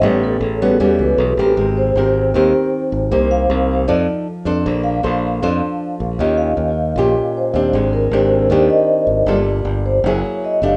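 A straight, even 4/4 bossa nova pulse moves along at 156 BPM, giving this short excerpt from a longer piece a sophisticated, sunny mood. Up front, a fingerpicked nylon-string guitar with fresh strings supplies a warm, classical-toned accompaniment, and touches of finger squeak come through. A growly, direct electric bass played with the fingers sits low and bright beneath it. Across the full 10.8 seconds, a vibraphone struck with medium mallets carries a solo, its dark, smooth, ringing metallic tone shimmering with a fast motor vibrato. The harmony moves through rich extended chords, from A9 and Abmaj9 through Bbmaj9 and Abmaj7#11 before landing on Gb9, all set in a light reverb.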